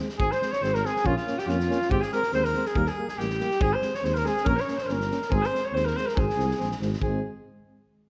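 Exuberant and virtuosic, this short Balkan brass band excerpt in a straight 2/4 puts a dark, classical trumpet melody with light vibrato up front, joined by a breathy, whispered alto saxophone second line with slapback echo. Beneath them sit a dark tuba bass, a mellow, distant trombone and a background euphonium, while a punchy, gritty acoustic drum kit with kick and snare pushes the groove under a moderate recital hall reverb.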